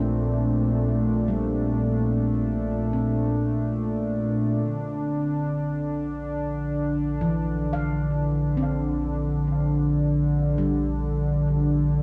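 Free-time, peaceful and weightless ambient in Bb lydian, cut from a longer piece: a smooth, detuned sawtooth analog pad sits up front holding soft-edged chords with chorus and cassette-tape color, moving from Bbmaj9 to F5/Bb at 4.6 seconds, while a ringing, meditative handpan played with the fingertips plays arpeggios in the boxy background through cassette tape and analog delay, and a deep, round sine sub bass holds a low Bb beneath, all within a wet small-room reverb and the soft haze of a home cassette recording.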